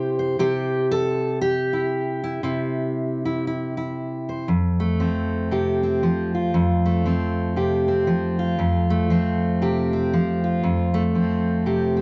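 A fingerpicked steel-string acoustic guitar, bright and full-bodied with a jumbo's depth, carries this hopeful, gentle folk excerpt alone, sitting up front with audible finger squeak as it moves from a C chord to F at 4.5 seconds. The tempo is 117 BPM in 4/4 with a light swing on the eighth notes, in F major, tuned slightly below standard pitch. A moderate studio reverb surrounds the guitar, and the sound has the worn, warbly pitch drift of old cassette tape.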